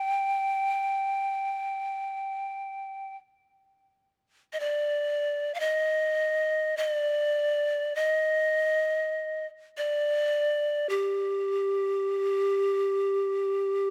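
A large set of cane pan pipes carries this solemn, mournful Caucasian folk lament alone, its breathy, bright tone marked by a crisp, chiffy attack and a trembling vibrato across the span from G4 to G5. Heard up close in a dry, detailed sound with lifted highs, the line unfolds freely before slowing from 9.2 seconds to the close of this short fragment of a longer piece.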